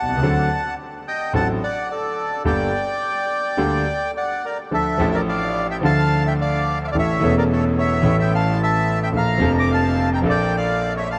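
A reedy, dark bandoneon sings the melody up front over a clear concert grand piano with deep, open bass from the opening moment of this tense, melancholic rubato tango excerpt at 108 BPM in 4/4, which shifts from G harmonic minor to D harmonic minor at 4.7 s as the chords move from D7 and Gmadd9 through Dm and A to Bbmaj7, set in a huge ambient reverb with a 7.2 s decay and a warm production.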